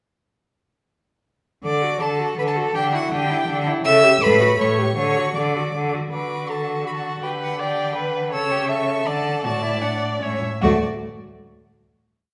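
A recital hall's reverberant glow surrounds this complete piece for string quartet, a quick classical-period movement in D major and 3/4 at 161 BPM, cheerful and graceful, with a rubato feel. The second violin, viola and cello enter at 1.6 seconds, and the first violin joins at 1.7 seconds, carrying the melody high and somewhat distant, its rich tone smooth and even with vibrato. The second violin, warm with a smooth top, doubles the tune at the octave, adds independent inner lines and holds sustained chords. The viola rocks through a two-note figure, offers a counter-melody and sustains chords of its own. The cello sits up front, expressive with vibrato and portamento, placing bass on the beats and sustaining the low line with passing notes. The opening phrase returns at 6.1 seconds, harmonies moving through G/D, A/C# and D/A, before the piece settles on a final D chord at 10.6 seconds.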